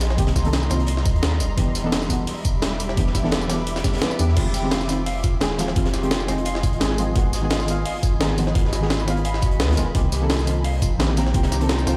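Stone-room reverb from a big sound system in a bare room surrounds this lush, melancholic liquid drum and bass excerpt at 172 BPM in F dorian, where a round sine sub bass sits up front beneath deep, nasal chord stabs with chorus and delay and a shimmering, granular pad pumping with sidechain. An overdriven, knocking electronic kick enters at 0.2 s, layered with a gritty, compressed sampler-style break of crash, hi-hat, snare and tambourine, while a dark, rolled-off acoustic break sits in the background behind high-pass filtering. From 4.4 s a clean, fingered electric guitar adds arpeggios through digital delay as the chords move from Fm7 to Abm7 and back to Cm7.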